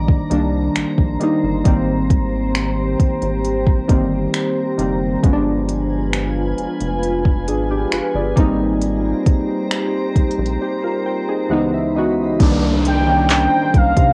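Lightly reverberant cassette home-recording sound frames this late-night, longing contemporary R&B excerpt in C minor at 67 BPM, where round, detuned analog keys with chorus and a dark, glassy FM pad with ensemble chorus and sidechain pumping carry chords such as Cm9, Abmaj9, G7b9 and Dbm9 over a rubbery, nasal square bass. A soft-kicked electronic drum kit of finger snaps, handclaps, crisp hi-hat and kick sits up front with vintage 12-bit sampler grit, and the keys play a fill from 10.6 to 12.4 seconds. At 12.4 seconds an electronic downlifter marks a new section, and a velvety, detuned synth lead with vibrato and chorus enters at 12.9 seconds, moving between F5 and G5.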